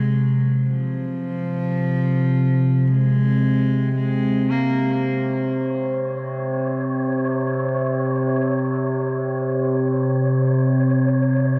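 A vast, echoing cathedral reverb surrounds this cavernous, dark ambient drone, cut from a longer piece. An up-front analog drone holds a low C throughout, its sawtooth and pulse-wave tones warbling with pulse-width modulation and chorus in a mellow, vintage, evolving haze. Over it a single bowed cello plays a soft, floating melody in a low register. The cello sounds pure and smooth-topped, played sul tasto with a trail of delay, and it stops at 5.1 seconds. From 5.7 seconds a faint, breathy wind-like texture of tuned noise enters high above, airy and shadowy in its own built-in reverb. The harmony rests on an F minor chord while the cello plays, then the drone and wind fill the space alone.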